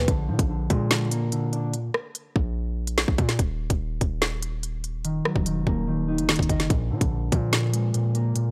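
A hard-hitting, punchy 808-style bass with a sine body, noise layer, fast attack and decaying tone anchors this ominous, cold drill excerpt at 145 BPM in a half-time feel in Eb harmonic minor, under an up-front electronic drum kit of hard-clipped kick, woody snare, rim click and crisp hats, while a dark, clean, fingered electric guitar plays to 1.7 seconds, drops out for a break, and returns at 5.0 seconds over Bb7 and Ebm chords, all set in a dry, gritty digital ambience with transformer saturation.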